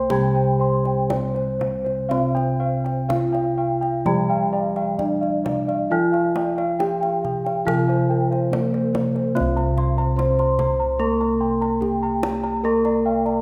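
A straight 4/4 pulse moving at 60-73 BPM carries this serene, ceremonial Javanese gamelan excerpt in C slendro, with soft-handed, tight kendang entering at 0.1 s beneath a mellow, airy bronze metallophone melody and a shimmering, paired-tuned metallophone accompaniment. High arpeggios ring out from a bright, horn-mallet metallophone and from close, dry, full-bodied bossed gongs, while lower bossed gongs with a vintage, band-limited colour anchor the bass. The ensemble sits in a wet scoring-stage reverb and moves from its opening section into a new one at 9.4 s.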